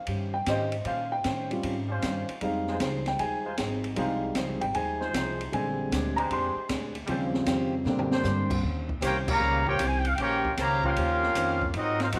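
A moderate plate-reverb sheen frames this joyful, brassy big band swing excerpt at 154 BPM in Eb mixolydian, where an intimate, up-front baby grand piano with audible action noise solos until 8.6 s over a woody, thumpy pizzicato upright bass, an open jazz drum kit with a boomy kick and high-tuned snare, a picked steel-string acoustic guitar with finger squeak sitting in the background, and soft-edged sustained chords from a dark trombone section, until a drum fill at 7.9 s leads to a vintage trumpet section melody with light vibrato and a tight second line from a clear trombone section from 9.0 s.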